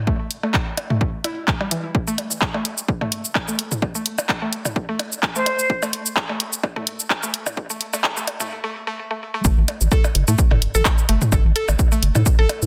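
A swung groove drives this sparse, quirky minimal techno excerpt, cut from a longer piece: an up-front electronic kick sits under a tape-warm analog drum machine playing handclaps, hi-hat and shaker, with soft clipping on the snare. Electronic percussion blips and toms, treated with dub echo, scatter around the beat. A woody, round mallet-like synth pluck carries the riff, bright and percussive with chorus, delay and sidechain pumping, while a filter sweep runs across the build-up. At 5.4 seconds a breathy concert flute, straight-toned and slightly unsteady, sounds one brief tongued note through a low-pass filter and dub echo. After a short break, the drop at 9.4 seconds brings in a rubbery, hollow square-wave bass, dark and bouncy, with a resonant filter pluck and sidechain pumping, as the harmony settles on an A7 chord. The mix is dense and heavily limited, with light reverb.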